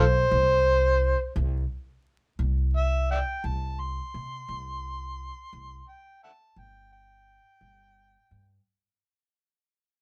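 A slow 12/8 pulse at 58 beats per minute, felt in dotted quarters with a straight swing-free lilt, drives this short cut from a longer acoustic country blues piece in C major, swaggering and soulful in mood. An overdriven, amplified harmonica carries the melody as a solo from start to finish, its gritty tone shaded with vibrato, tongue slaps, scooped notes and a soft attack in a jazz-inflected style, sitting up front between C5 and C6. Beneath it, a pizzicato upright bass on gut strings plays a woody, thumpy bass line from G1 to C3, also close and present throughout. The pair share a modest small room with a moderate reverb tail, and a layer of vinyl crackle gives the sound an aged patina. The whole passage, just under nine seconds long, is heard as a fade-out.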